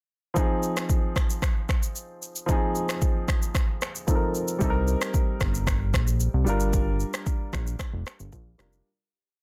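A baby grand piano opens at 0.3 s with held chords in drop-2 voicings, its natural, short-sustained tone sitting up front and touched with grace notes. An electronic afro-pop kit joins straight away with a soft, deep kick and syncopated rim clicks layered with finger snaps over a shaker, setting a mellow, smooth afrobeats groove in a straight 4/4 feel. Moving from Fm7 through Cm7 to Gm7, this short verse piece gains a fat analog bass at 4.6 s, playing a bouncy, syncopated line with slides. The bass is thick and detuned, blending sawtooth, square and triangle waves with ring modulation and a filter sweep, and its fast attack and sustained notes give it a warm, mellow, up-front weight. With little reverb and a dense, heavily limited modern master, the piece closes on a fade-out starting at 6.7 s.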